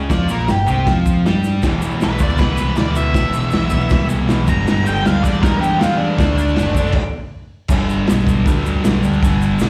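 Garage rock at 158 BPM in G major, raw and swaggering, this live club excerpt pairs a thick, double-tracked fuzz guitar riff up front with growling overdriven picked bass, a dark octave-fuzz lead guitar melody that drops out at 6.9 seconds, a crunchy, saturated breakbeat kit with dark cymbals and a tight kick that fills at 1.4 seconds, and a grainy egg shaker in the background, all heard through the venue's PA with club reverb, with a stop from 7.0 to 7.7 seconds before the final section.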